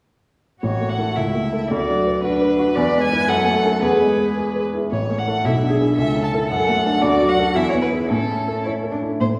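In a brisk 2/4 at 112 BPM, pushed and pulled with rubato, this graceful, spirited classical-period movement for piano trio in A major unfolds as a short cut from a longer piece. All three players enter together at 0.6 s: the violin carries the melody between A4 and A5 with a warm, focused tone, smooth on top, bowed with vibrato and placed up front. Beneath it the cello sings a second line from C#4 to B4, rich and expressive, its bowed notes shaped with soft attacks, vibrato and portamento. The baby grand piano supplies a clear, polished accompaniment reaching from A1 to C#5, present and up front in the balance. The harmony moves through A, Bm/D, E7, F#m and D before settling back on A at 8.1 s, and the piano is the last to fall away at 9.4 s. The trio sounds heard from further back in a recital hall, with a wet reverb lasting about 1.5 seconds blended with small-room ambience.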